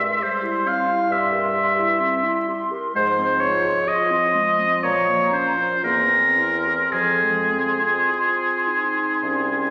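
Melancholic and solemn, this brief fragment of a slow romantic movement for wind quintet unfolds with a rubato 4/4 feel. A clear, up-front oboe with light vibrato carries the prominent second line, while a hollow, airy flute sings the high melody with crisp attack and vibrato, close-miked yet softer in the mix. A mellow French horn and a distant, roomy clarinet fill in the accompaniment above a warm bassoon bass with a smooth top, set in a wet scoring-stage reverb with a layer of vinyl crackle.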